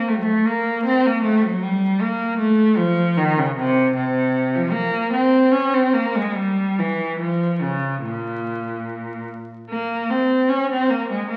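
A single bowed cello opens at 0.0 s and carries this brief fragment of a baroque-style suite movement alone until it is cut off at 11.4 s. The playing is introspective and flowing, in a triple metre that the player stretches freely with rubato. The tone is clear and smooth, coloured by vibrato and kept even across a range from Bb2 up to Db4, with the instrument tuned slightly below modern concert pitch at A4 = 436 Hz. A new passage begins at 9.7 s, just before the recording breaks off. The cello sits in a recital hall with a generous 1.5-second reverb tail, and the whole is heard through the crackle of a very old 78 rpm record, which lends the performance a faded, far-off quality.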